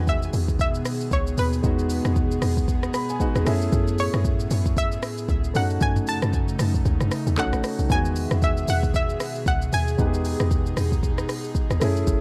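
A swung sixteenth-note groove in 4/4 drives this relaxed, soulful amapiano excerpt, built on an electronic afro-pop kit whose deep kick, smooth hi-hats, handclaps, rim clicks, shaker and toms sit up front. Beneath it, a round, percussive log drum bass with a fast attack and decaying tail carries the low end and stands as the loudest part. An intimate concert grand piano plays accompaniment with audible action noise and adds a fill between 2.7 and 3.7 seconds. Meanwhile, an airy, breathy pad holds soft, warbling chords treated with chorus and sidechain pumping. An analog pluck carries the melody with a bright, detuned sawtooth tone, chorus and digital delay, stopping at 10.7 seconds. The harmony moves from Emaj7 through F#m9 and D#m7b5 to B9 before returning to Emaj7, set inside a dark, dry production.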